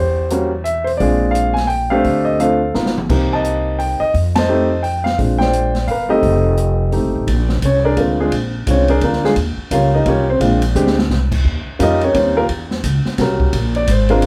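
An intimate baby grand piano with audible action noise and a woody, gut-strung upright bass open this sophisticated, swinging jazz piano trio excerpt in Bb major at 172 BPM in 3/4. An acoustic drum kit with dark cymbals, a high-tuned snare and a boomy kick joins at 0.3 seconds and adds a short fill at 2.7 seconds before a band accent at 4.3 seconds, with the piano taking a solo from 7.3 seconds over the thumpy pizzicato bass, all set back in a moderate club reverb.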